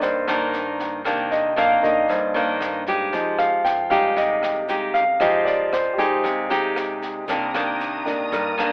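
This short excerpt is a wistful, melancholic bossa nova in C minor at 116 BPM in a straight 4/4, heard through a narrow, telephone-like filter with light reverb. From the start, a concert grand piano with a natural tone and deep low end takes the solo up front, while a fingerpicked classical nylon-string guitar on fresh strings sits close beside it, its finger squeaks audible. Underneath, a woody pizzicato upright bass on steel strings stays in the background, and a jazz kit played with brushes in a small room adds a boomy kick, rim clicks and a high-tuned snare, with a grainy, mellow tube shaker barely there. The harmony moves from Cm9 to Fm9 at 3.1 seconds and back to Cm9 at 7.3 seconds, where a lush, bowed symphonic string section joins with soft attacks and expressive vibrato, holding sustained chords until the clip ends at 8.7 seconds.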